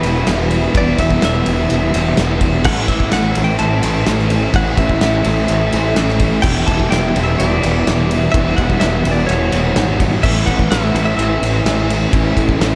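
A brooding, dreamy shoegaze and dream-pop rock passage at 126 BPM in E dorian, moving between Em and Aadd9, opens with all of its parts together: a bright, twangy clean electric guitar carries the melody through diffuse ambient delay over a deep, detuned analog pad with chorus and phaser in the background, while three very quiet guitar riffs (one crunchy and overdriven, one bright and double-tracked, one thick and dark with fuzz) sit beneath a growly, up-front fuzz bass and a loose indie drum kit with a punchy kick and dark cymbals, all bathed in a huge, reverb-soaked mix.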